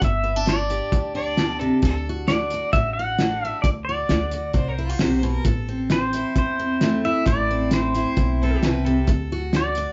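The band sounds like it's playing live in one room, with a wet reverb and a rolled-off, muffled top end that gives the recording a lo-fi, homespun feel. This brief cut of sunny, heartfelt honky-tonk and classic country moves in a straight four over G, D and A minor chords. An up-front pedal steel guitar carries the melody with clean, compressed fingerpicked slide lines and volume swells, while a bright, full-bodied steel-string acoustic guitar, freshly strung, picks the accompaniment close to the listener. A woody, thumpy upright bass on gut strings plucks the low end beneath a cloth-damped drum kit with a fat snare, a tight kick and a hi-hat, its saturated, gritty thud sitting prominently in the mix. A clear, biting fiddle enters at 1.1 seconds with a quieter bowed second line and light vibrato, dropping out at 9.4 seconds.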